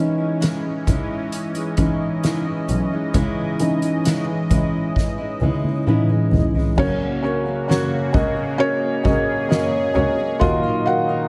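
This tender, emotional pop ballad opens with a felt-muted upright piano, whose mellow, intimate tone carries a solo over a detuned, resonant synth pad with chorus and a fingerpicked steel-string acoustic guitar playing full-bodied arpeggios on fresh strings. A soft-mallet drum kit joins almost at once, up front, with dark cymbals, a fat snare and a punchy kick. At 0.9 s a bowed double bass arrives in the background, distant and floating with a soft attack. The pace is a slow, straight 66 BPM in 4/4. A drum fill from 5.0 s leads into a new section at 6.8 s, where the harmony settles on F# major before moving to D#madd9. Light reverb and a small room ambience keep the sound close and gentle in this excerpt from a longer piece.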